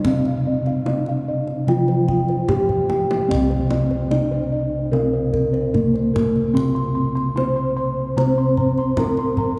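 A bronze metallophone carries the serene, shimmering melody of this Javanese gamelan fragment, its padded mallets drawing a mellow, ringing tone whose paired tuning sets up gently beating overtones. A second metallophone plays accompaniment beneath it, bossed gongs supply a round, soft bass with a slightly vintage, band-limited colour, and higher bossed gongs add airy arpeggios from 0.1 seconds. A deep kendang keeps time and adds a brief fill at 2.7 seconds, and the whole ensemble sits in a long cathedral-like reverb that bathes the bronze in a glowing haze.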